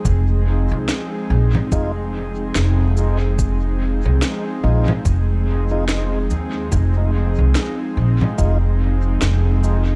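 An airy, breathy pad with chorus holds a sustained Fm7 alongside a dark, woody pizzicato upright bass, placed up front with tube saturation, opening this spacious, hazy ambient dub fragment at 72 BPM in F minor with a 16th-note swing. A deep, tape-warm electronic kick sits in the background while a dub-echoed shaker, snare and congas, re-recorded in a large room, add a woody snare; lightly overdriven tonewheel organ stabs with key click and a stopped rotary speaker enter at 1.7 s through dub echo, and both organ and kick stop at 8.6 s, all within a dry mix.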